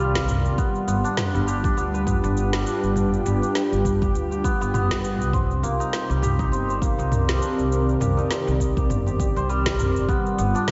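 Drenched in a wet concert-hall reverb with a big arena sound and softened highs, this meditative, hypnotic stretch of organic downtempo in C minor moves at 101 BPM in a swung 4/4, cut from a longer piece. A shimmering hammered santur plays up-front arpeggios through digital delay over a mellow, detuned sawtooth analog pad that sustains chorused chords and pumps with sidechain, while a growly pizzicato upright bass on steel strings pumps beneath them. From 0.2 s a deep electronic kick and a layered deep house kit of cabasa, toms and a woody snare join in, all circling between Cm7 and G7.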